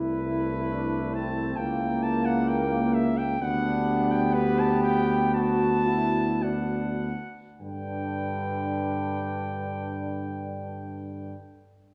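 A classical, hymn-like brass band excerpt with a tender, warm mood, moving in a flexible rubato that slows through the first 7.6 seconds before arriving on a G chord. A smooth-topped flugelhorn carries the melody over a mellow, distant French horn section playing a loose second line, while a roomy solo trombone with light vibrato and a trombone section accompany from the background. An up-front tuba with gentle vibrato anchors the bass, and the ensemble sits in a moderate concert hall reverb.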